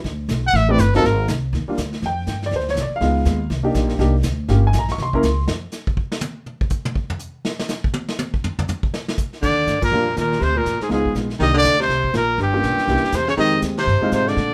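A clear trumpet with vibrato and scooped notes leads this warm, playful excerpt of fast small-group swing and bop at 243 BPM in Eb major, over woody pizzicato upright bass, an intimate, slightly detuned upright piano with audible action noise, and a vintage brush kit with dark cymbals that takes a drum solo from 5.5 to 9.4 seconds, after which the trumpet returns alongside a subtoned baritone saxophone second line and a band accent at 9.8 seconds.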